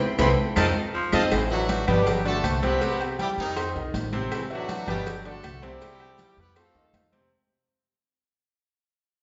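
Festive, joyful salsa, cut from a longer piece, opens with a drum fill and a band accent as a bright, punchy trumpet section carries the melody over a raspy, gritty baritone saxophone line in the background, both stopping by about 1.2 seconds. From 1.3 seconds a brilliant horn section with octave doubling takes the melody up front beside an intimate grand piano with audible action noise and long sustain, while a dark, thumpy pizzicato upright bass anchors chords such as Cmaj7, Am7 and Cmaj9#11. Damped, high-tuned congas, a tight cowbell, grainy maracas, woody claves and very quiet ringing timbales and agogo bells fill the percussion, all set in a wet recital-hall reverb as the music fades out.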